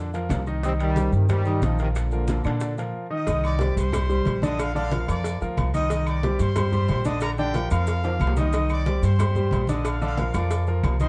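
A fiery, danceable salsa excerpt in C minor at 182 BPM, where a tight, brilliant trombone section carries the melody until 2.9 seconds before a bright trumpet section with light vibrato takes over at 3.1 seconds. A clear, intimate grand piano with audible action noise and a thumpy, woody pizzicato upright bass sit up front throughout, while low-tuned congas, tight bongos and cowbell, ringing timbales and agogo bells, grainy maracas and woody claves fill out the percussion, with a drum fill at 8.0 seconds. The production is dark with light reverb as the harmony alternates between C minor and B-flat.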